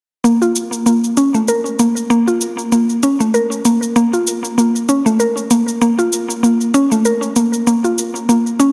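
Warm and hypnotic, this organic downtempo excerpt from a longer piece rides a gently swung 4/4 groove, with a mallet-like FM synth pluck playing arpeggios up front from 0.2 to 8.7 seconds. The pluck sounds woody, round and bright, with a fast attack, short decay, a noise layer, and chorus and delay. An electronic, produced cabasa sits further back beneath it, and both are bathed in a wet concert-hall reverb and pressed into a heavily compressed, radio-style sound.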